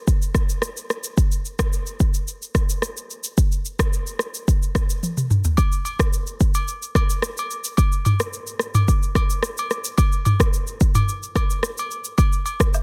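A straight 4/4 afrobeats groove at 109 BPM sets a hypnotic, sultry mood in this excerpt, where an up-front electronic afro-pop drum kit with a deep kick, rim click, shaker, toms and a softly clipped snare plays from 0.1 s, a drum fill arrives at 5.0 s, and acoustic agogo bells and woodblock, close and dry with a tube shaker and group handclap, join quietly at 5.6 s and run to the close, all set in digital ambience under a dense, heavily limited modern master.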